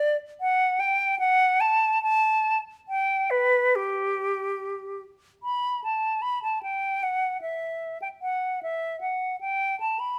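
A silver concert flute opens alone with a soft attack, its pure tone sitting up front and colored by vibrato. This is a classical, baroque-style fantasia for unaccompanied flute in G major, moving at around 69-77 BPM in 4/4 with a flexible, rubato feel. The mood is serene yet dance-like, the line ranging from G4 up to B5. The same opening material is stated twice, with the second statement beginning at 5.4 seconds and running to 10.2 seconds. A moderate stone-room reverb, lasting about 1.2 seconds, surrounds the flute with a resonant halo, and the brief passage is clearly cut from a longer piece.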